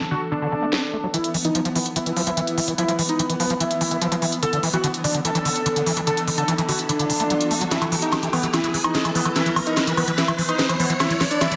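A dense, heavily limited mix in a moderate digital room carries this driving, psychedelic trance excerpt, built on a squelchy, gritty acid bass riff with distortion, tape echo and a filter sweep, beneath a thick, detuned unison lead with phaser and vibrato. A pulsing gated texture holds sustained chords in the background alongside a warbling, nostalgic tape-like pad, while an up-front, overdriven electronic drum kit with a cracking snare and smooth hats enters at 0.7 seconds. The passage keeps building from 1.1 seconds onward, with a background riser arriving at 3.9 seconds and a drum fill starting at 7.7 seconds.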